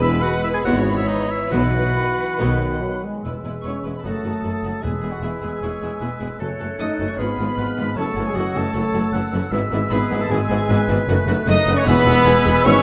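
Classical orchestral music, dramatic and urgent, in a fast romantic movement with rubato, cut from a longer piece. From 0.7 s a lush, focused violin section carries the melody with vibrato over a bed of second lines from clear oboe, distant clarinet, pure flutes and background violins. Warm French horn chords, a mellow bassoon, a very quiet viola section and a bass of rich cellos, double basses and tuba sit beneath, while very quiet timpani play until 5.4 s and return briefly near the end, mellow vintage trumpet stabs enter at 3.6 s, and a wet scoring-stage reverb surrounds the orchestra.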